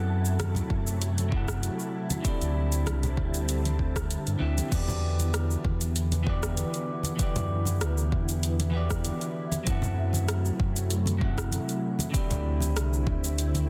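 A smooth, wistful sunset chillout excerpt in E minor at 97 BPM opens on a round, deep analog bass up front, a slightly broken-up electric guitar with delay, a silky string machine shimmering through phaser and ensemble chorus, and a breathy, wind-like tuned noise texture that drops out at 4.7 seconds, while an overdriven deep house kit with metallic hats, rim click and shaker, very quiet thick-skinned congas and a deep overdriven electronic kick from 0.7 seconds carry a lightly swung groove over chords moving from F#m7b5 and D9sus4 to Em7, all in a dense, heavily limited modern master.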